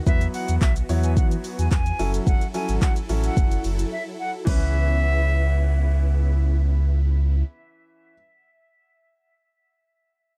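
A straight 4/4 groove drives this bittersweet dance-pop passage, taken from a longer piece, with a deep house drum kit of deep kick, handclaps, hi-hat, shaker and crash cymbal sitting up front until it drops out at 4.6 seconds. Beneath it, a sub bass with an added octave gives a full, sine-like weight, pumping against the kick. Huge, lush supersaw chords, detuned and bright with a phaser, sustain through the harmony as it moves from Esus2 to F#m7 and then C#m7. A breathy silver concert flute carries the expressive, close-miked melody in a straight tone, trailed by a dub echo. A clear, polished baby grand piano supplies the accompaniment and rings on alone until 8.1 seconds. The production is dark and nearly dry, with a brief break just before the drop gives way to a new section.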